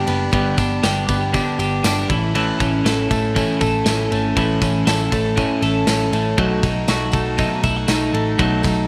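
A straight 4/4 groove at 119 BPM from a big acoustic rock kit, with its boomy kick, medium-tuned snare and ride cymbal, drives this youthful, breezy jangly indie pop fragment, where a bright, twangy twelve-string electric guitar sits up front playing compressed arpeggios with tape echo over a clean, picked electric guitar, a dark, round, foam-muted vintage electric bass and a jingly tambourine far in the background, as the chords move from G to A and then B7 at 6.4 seconds in a dry mix.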